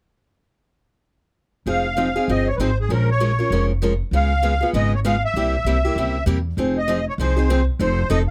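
A fiery, bittersweet burst of acoustic string swing in the jazz manouche style opens at 1.7 seconds, with the musette accordion, picked steel-string acoustic guitar and upright bass all starting together at a brisk 196 BPM in 4/4 with a swung eighth-note feel. The accordion carries the melody in F minor between Ab4 and F5, reedy and shimmering in its musette tuning. Beneath it the guitar plays accompaniment with a bright, boxy parlour tone, while the pizzicato upright bass sits slightly louder, woody, warm and thumpy on its gut strings. The harmony moves through Fm7, Bbm7, Db7 and C7b9 before the passage turns at 6.6 seconds back to Fm7 and then F7. All three instruments are close and up front, captured with detailed microphones and little reverb, and this short piece cut from a longer performance ends at 8.3 seconds as the bass rings out last.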